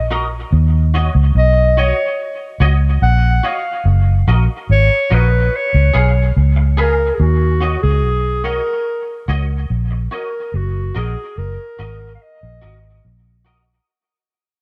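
Set in a straight 4/4 at 72 BPM, this roots reggae excerpt in Eb minor moves with a serious, hypnotic gait, cut from a longer piece and fading out from 7.2 seconds to the end. A dark, foam-muted electric bass sits up front and loudest in the mix, its round, amped tone anchoring the low end from the first moment to 13.8 seconds. Above it, a mellow clarinet carries the melody in a classical style, sounding distant and roomy yet still forward, with tape echo trailing its lines between Gb4 and Gb5. A twangy, clean electric guitar supplies quieter accompaniment, its compressed, fingered tone thickened by ensemble chorus and tape echo. The harmony circles through Ebm7, Gb6 and Db7, and the echo-heavy mix is lightly touched by studio reverb.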